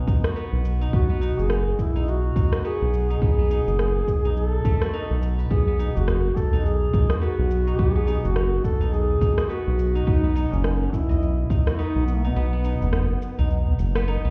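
A mellow duduk with vibrato and scooped, folk-style notes carries the melody of this earthy, swung organic downtempo excerpt, over silvery, ringing fingerpicked steel-string zither arpeggios, both sent through digital delay, along with a round, dark analog bass pumping from sidechain, an overdriven layered electronic kick and shaker with rim click, and a deep udu that joins in the background at 6.0 seconds, all heard muffled as if through a wall within a stone room reverb.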